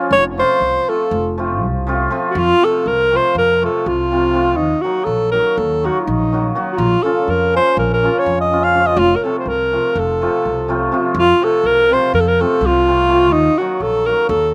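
A shimmering hammered dulcimer with a slapback echo opens this fiery, virtuosic Balkan wedding-band piece, cut from a longer work, and a punchy alto saxophone takes a solo from the start to 2.4 seconds. Played up front with vibrato in a classical style, the saxophone carries the melody at a brisk 246 BPM in 9/8, set in F phrygian dominant over chords moving from F to Ebm and Bbm. A woody, thumpy pizzicato upright bass sits low beneath the ringing dulcimer, and the dry outdoor sound carries little reverb.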